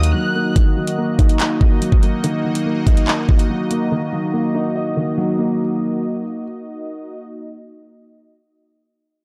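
Menacing, tense drill hip hop in Eb minor at 143 BPM with a half-time feel, opening on a brief, smooth bowed violin section line with vibrato and tape echo that ends by 0.5 s, as a mellow, intimate grand piano with audible action noise sits up front through 6.4 s over an airy, detuned sawtooth pad with chorus, a noise layer and slow attack, while a prominent electronic drum kit of knocking kick, metallic hi-hats and handclaps plays until 3.8 s, all in a shadowy, digitally ambient mix cut from a longer piece.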